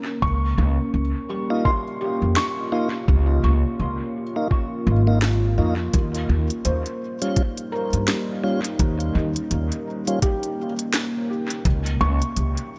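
Ambient dub with a hazy, spacious mood, this section is cut from a longer piece and sits in 4/4 with a gentle swing on the sixteenths. A felt-muted upright piano plays soft, intimate arpeggios with audible action noise, its notes trailing into dub echo. Beneath it, a deep, warbling pad of detuned sawtooth sustains chords, thickened by chorus and its own reverb. Up front, a dark, gut-strung upright bass is plucked alongside a compressed, pitched-down electronic kick with a muffled thump. From 1.5 s a mellow tonewheel organ adds round stabs through a slow rotary speaker and dub echo, and at 2.4 s an organic electronic kit enters with a woody snare and crisp hats, tape-warm and echoed. The harmony moves from Db6 to Eb7 and back to Db6, set in a moderate echo-chamber reverb that lends the mix depth.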